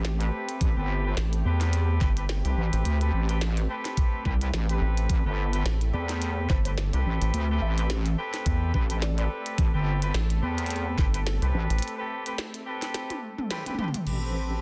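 A wobble bass and a smooth analog pad open this swaggering, playful glitch hop excerpt together, the bass heavy, detuned and saturated up front while the pad holds sustained chords with chorus and sidechain pumping in the background. At 107 BPM in A minor with a 16th-note swing, a glitchy drum kit of clicky hats, a tiny soft-clipped snare, toms and crash cymbal joins from the start, alongside punchy, vintage horn stabs with light vibrato and tape echo. A knocking, layered electronic kick arrives up front at 0.6 seconds, and a rubbery, hollow square bass with a resonant filter pluck bounces in beside the wobble. Between 5.9 and 9.3 seconds a woody, wave-folded pluck adds a faint, dark melody with lush chorus and tape echo. The kick falls away at 11.1 seconds and the rubbery bass follows at 11.8, opening a break. A drum fill runs from 12.9 seconds with a band accent at 13.5, and a brief expressive string section with portamento surfaces at the very end. 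The mix is dense and heavily limited, set in light reverb with a digital ambience.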